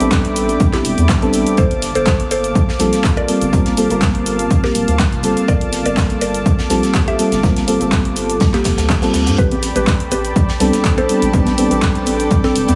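This moody deep house excerpt at 123 BPM opens with bright, detuned analog pad chords and dark FM electric piano stabs with dub echo, both pumping against the sidechain alongside a round analog bass, over a tape-warm drum machine of handclaps, hi-hat and shaker, a dry, airy funk kit's hi-hat and snare in the background, a very quiet, nostalgic tape-like pad and an overdriven, up-front electronic kick, as the harmony moves from Am11 to Gm11; a woody, chorused mallet-like synth pluck carries the melody from 0.7 s, a reverse cymbal sweeps in at 8.6 s, and shimmering string-machine violins arrive at 9.4 s with the return to Am11, joined just after by soft, high-tuned congas, while the mix carries heavy radio-style compression and light reverb.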